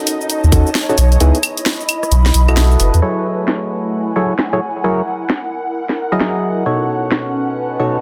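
A thick, saturated sub bass sits up front from 0.4 to 3.0 s, joined by a tight electronic kick that lands only briefly around 0.5 s, in this late-night, soulful two-step UK garage excerpt at 132 BPM with a swung 16th feel in F# dorian. Hollow, nasal organ stabs with chorus and delay punch through over a layered garage kit whose cracking snare, filtered hats, cabasa, claves and rim clicks add warm, shuffling detail. Behind them, an ethereal, mellow pad sustains rich chords such as B9, C#m9 and F#m9 while a soft, breathy pad adds airy texture, both pumping against the sidechain in light digital ambience under a dense, heavily limited master.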